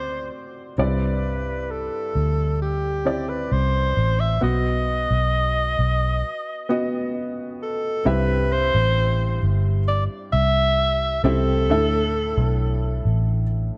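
Hopeful and heartfelt, this slow pop ballad excerpt at 66 BPM sets a smooth alto saxophone, played with vibrato through a digital delay, over a soft felt-muted upright piano with audible action noise and a round, punchy foam-muted electric bass, all in a dark production with light reverb, with a break from 6.2 to 8.1 seconds before the music moves from Cadd9 and B toward C and Dsus2.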